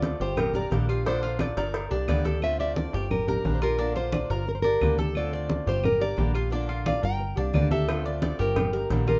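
A punchy, up-front analog bass with a sawtooth filter pluck anchors this danceable Cuban son and guajira groove at 176 BPM in 4/4, moving between Gm and Dm7 as a fingerpicked nylon-string guitar carries a fresh classical melody over a boxy swing-style acoustic guitar, metallic double-string arpeggios on the Cuban tres, ringing low-tuned congas struck with hard hands, woody claves in the background, and a tight high-tuned cowbell heard until 2.4 s and again from 7.9 s, the whole mix sitting in a moderate studio reverb.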